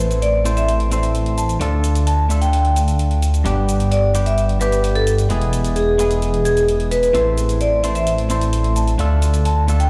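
A straight 4/4 pulse at 130 BPM is set by layered electronic shaker and hi-hat, their metallic hats sitting low in the mix and re-recorded in a small room. This festival progressive house passage in A minor, tuned to A4 = 438 Hz, carries an emotional, anthemic mood, and it is cut from a longer piece. A thick, detuned sawtooth bass sits up front from the start, its mellow unison voices treated with chorus, while a bright, twangy clean electric guitar, recorded direct and compressed, plays accompaniment through spring reverb and dub echo. At 0.2 seconds a close-miked vibraphone struck with medium mallets, motor off, takes the melody with a full, ringing tone fed into its own dub echo. The harmony moves through Am, Dm, G and E before returning to Am and Dm, and the whole mix sounds as if played on a big sound system in a bare room, with a large studio reverb around it.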